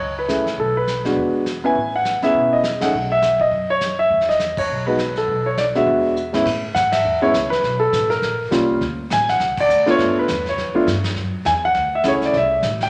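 A sophisticated, swinging jazz piano trio excerpt at 204 BPM in 4/4 opens with a natural, up-front grand piano carrying the melody over a woody, thumpy pizzicato upright bass on gut strings and a vintage kit played with brushes, whose dark cymbals and tight kick sit in a small, pumping room; band accents punctuate the lines, and a drum fill at 6.2 seconds leads the tune from E major into A major at 6.5 seconds, with rich extended harmonies gliding through a generous, wet studio reverb until the cut at 12.9 seconds.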